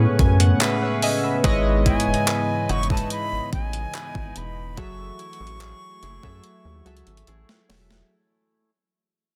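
A dense, heavily limited modern mix bathed in digital ambience carries this sensual, longing contemporary R&B fragment, where up-front analog keys with chorus and a rubbery, saturated square bass sit over a crisp, overdriven 8-bit drum machine with thumpy kick, snare, hi-hat and handclaps, while a hollow, airy pad and twangy, tape-echoed clean electric guitar arpeggios hover in the background, a very quiet round pluck adds texture, and a breathy silver concert flute carries the melody from 1.9 s as the passage fades out.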